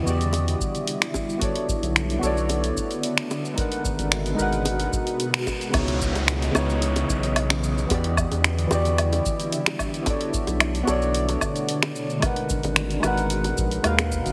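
A lush hall reverb and heavily compressed, radio-like sheen frame this wistful, smooth sunset chillout excerpt, moving in a straight 4/4 at 111 BPM. Soft, mellow electric-piano-like synth keys carry the accompaniment up front, their detuned tone colored by chorus and tape echo, while a shimmering, ethereal pad with an octave-up glint holds sustained chords beneath. A round, dark analog bass sits up front with a deep, sustained body, and a smooth R&B kit of finger snaps, warm hi-hat, shaker and woodblock supplies the groove alongside a deep electronic kick re-recorded in a small room. Tight, high-tuned bongos play with hard hands, close and dry in the background. The harmony drifts through Em9, Bm9, G#m9 and C#m9, a band accent lands at 5.3 seconds just before a new section opens, and an electronic downlifter sweeps in from 5.8 to 10.1 seconds.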